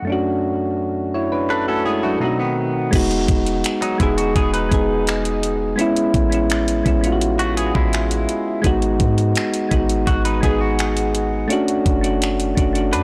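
The recording sounds blown-out and overdriven, with a light reverb around it, in this tender, dreamy contemporary R&B fragment cut from a longer piece. Soft, round electric-piano-like synth keys sit up front from the start, their mellow, detuned tone thickened by chorus as they carry the chords. Alongside them, a bright, twangy clean electric guitar, recorded direct and compressed, picks arpeggios through lush chorus and delay. At 2.9 seconds a deep, boomy 808-style bass and a smooth, electronic R&B drum kit arrive together. The kit pairs a knocking kick with metallic hi-hats, finger snaps and a crash, with soft clipping on the snare and a tape-tinged character. The harmony drifts through rich extended chords such as Emaj9, Amaj9 and G#m7.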